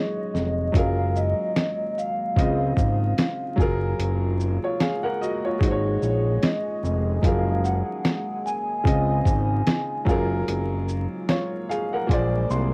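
Vinyl crackle over a cassette recording and a modest room sheen frame this hazy, nostalgic lo-fi hip hop excerpt at 74 BPM with a swung 4/4 feel. A muffled, thumpy sampler-style drum kit and a fat, nasal analog bass arrive up front at 0.3 seconds beneath a woody, vintage upright piano and a deep, moody detuned pad lingering in the background. A metallic, ringing vibraphone with soft mallets and fast motor vibrato carries the mellow tape-echoed melody until 10.0 seconds, and the piano slips in a short fill at 12.1 seconds as the chords of Gbmaj9 and Dbmaj9 give way to Bb9.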